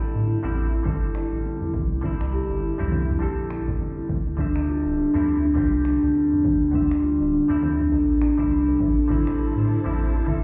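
A swung sixteenth-note groove drives this earthy, mystical organic downtempo piece, where a woody, buzzing kalimba with tape echo plays arpeggios up front over a round sub bass, a clean semi-hollow electric guitar with tape echo and sidechain pumping adds accompaniment, overdriven electronic cabasa, congas and finger snaps sit in the background beside a dry, high-tuned tabla, a punchy electronic kick arrives at 0.9 seconds, and a biting symphonic string section enters at 8.8 seconds with sustained chords, the whole mix sounding muffled through a wall with stone-room and lush hall reverb.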